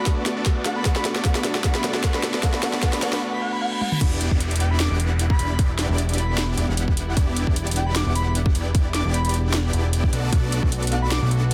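Future bass in a dreamy, emotional half-time feel, where a breathy, flute-like synth lead with tremolo, chorus and delay floats over lush, detuned supersaw chords, a tine electric piano that drops out at 4.0 s, a very quiet chamber string section, faint risers and a reverse cymbal, hard-clipped electronic kicks and a trap kit with sharp snare and metallic hats, until the drop at 4.0 s brings in a fat, saturated analog bass pumping against the kick in a dense, heavily limited mix.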